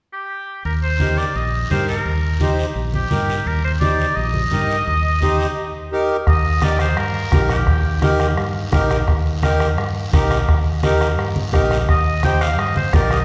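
A clear, distant oboe opens this danceable, joyful cumbia excerpt in Eb major, its light vibrato carrying a classical-style solo melody up front at a brisk 171 BPM in straight 4/4. A deep, round fingered electric bass enters at 0.6 seconds, dark and punchy, joined by a raspy, close and dry guiro and then by a reedy, up-front accordion whose slow beating gives the chords a full, close-miked body. Low-tuned congas with a thick-skinned, warm tone sit in the background, while a bombo played with a soft beater arrives at 6.3 seconds just after a short break, deepening the groove for the second section. The oboe drops out briefly and returns at 11.9 seconds to ride over the steady accompaniment. The whole is set in the generous, wet reverb of a church or concert hall, giving the mix a spacious, resonant sheen.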